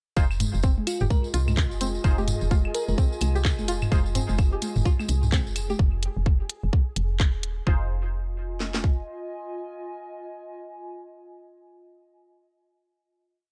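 A tight four-on-the-floor kick and cracking snare from an up-front garage drum kit anchor this clinical, hypnotic minimal techno piece, joined by a second layer of programmed hats and handclaps on a swung 16th-note feel. A woody, round FM bass carries a dotted rhythm with sidechain pumping, while tape-warm electronic claves and toms click and blip in cross rhythm and a close, jingly tambourine plays hand-played sixteenths. A twangy, string-like resonator pluck repeats a 10-step loop that drifts against the bar, its filter sweep and moving notch coated in chorus and tape echo, and crisp, detuned wavetable chord stabs echo sparsely as one shape moved in parallel. A sparkling, bell-like FM electric piano adds short answering phrases with a cassette-tape tint, alongside a mellow pulsing gated texture holding a high note and a nostalgic, lo-fi pad that warbles through slowly shifting chords. 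From 7.7 seconds the stabs and pad hold a final chord while the kick and snare stop at 9.0 seconds, and the recording carries a dry, gritty digital ambience.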